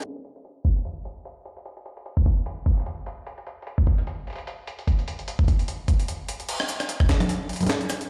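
Swung sixteenths at 149 BPM drive this glitchy, intricate IDM fragment, where a gritty, pitched-up, overdriven jungle sampler-style kit of congas, crash, hi-hat, rim click, shaker and a medium-tuned snare sits up front from the start, joined at 0.6 seconds by a compressed, thumpy electronic kick that stops at 7.2 seconds, all heard as if blasted through a big sound system in a bare stone room under a low-pass filter, while a filter sweep runs until a new section arrives at 6.5 seconds.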